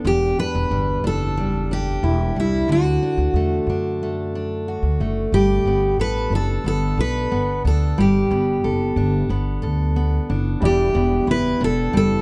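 A dark, lightly reverberant production frames this short, heartfelt acoustic pop fragment, cut from a longer piece and moving at an easy-going 91 BPM in G major. Two picked steel-string acoustic guitars sit up front: a full-bodied jumbo carries the accompaniment across a broad span, while a dreadnought enters at 0.1 seconds to sing the melody in a narrow upper register. Beneath them, a woody pizzicato upright bass anchors the low end, also placed prominently. The harmony drifts from Em7 to D, settles on a long Gadd9, and returns to Em7 at 10.6 seconds, when a polished concert grand piano slips in quietly in the background with clear, short-sustained tones. The overall feel is relaxed and sincere, built on the snug blend of strings and bass.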